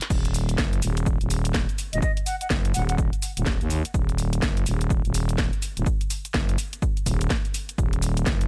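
A growling, thick FM bass with overdrive and sidechain pumping sits up front in this gritty, aggressive bass house excerpt in Eb minor at 125 BPM with a swung 16th feel, driven by a punchy, tape-warm electronic kick and a layered garage kit of cracking snare, hi-hat, shaker, handclaps and crash cymbal re-recorded in a small room, while a reedy, airy concert flute with tape echo appears briefly from 1.9 to 3.0 seconds amid digital ambience.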